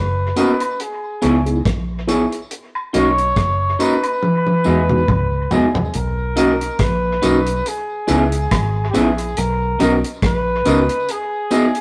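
A soft-attack flugelhorn with vibrato carries the tender, romantic melody of this 70 BPM lovers rock reggae piece in B major, over a round, foam-muted fingered electric bass, a mellow tine electric piano, twangy, slightly broken-up stabs from an electric guitar through a small old amp, a dark, dry reggae drum kit with dub echo and a fill from 4.2 to 5.9 seconds, and tambourine and woodblock with dub echo sitting in the background, captured in a rough rehearsal-room recording with stone room reverb and tube saturation.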